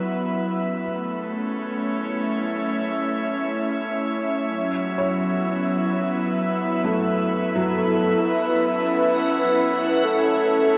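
Ambient excerpt with a luminous, warm mood, steeped in a long shimmering reverb and a cassette-tape character. An airy, breathy pad sits up front, holding sustained chords with chorus, while a muted felt upright piano, its action noise audible, fades in beneath it with delay-touched arpeggios. At 7.7 seconds a soft, flute-like synth lead with vibrato enters with a brief melody, and from 8.5 seconds a reversed, granular swelling texture adds a dreamy glow.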